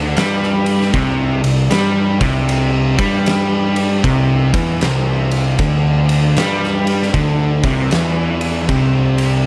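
A moderately reverberant studio sound frames this sludgy, brooding stoner and doom metal excerpt, played with a swung feel that cuts off mid-piece. An up-front, double-tracked fuzz guitar grinds out a dark, distorted riff over a growly, overdriven picked bass with its own fuzz. An oversized, low-tuned acoustic kit enters at 0.2 seconds, its punchy kick, fat snare and dark ride cymbal pumping in a bright stone room.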